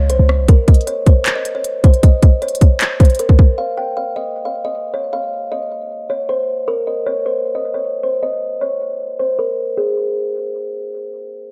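Trap-leaning hip hop with a melancholic, menacing mood, this short cut from a longer piece moves with a half-time feel and a dark, warm production that sits dry, with little reverb. A plucked kalimba carries the melody from the start until 10.9 seconds, its woody, hollow-box tone and bright thumbnail pluck ringing close and full, softened by a low-pass filter and trailed by delay, with a filter sweep running over it through the first 9.8 seconds. A short, punchy 808-style bass with a sine body, a noise layer and a fast attack hits up front only in the first half second before decaying. The electronic trap kit, with hard-clipped kick, crisp hi-hats, handclaps and rim clicks, sits loudest in the mix and drops out at 3.5 seconds, leaving the kalimba to carry on by itself. A brief second section begins at 9.8 seconds as the piece cuts off.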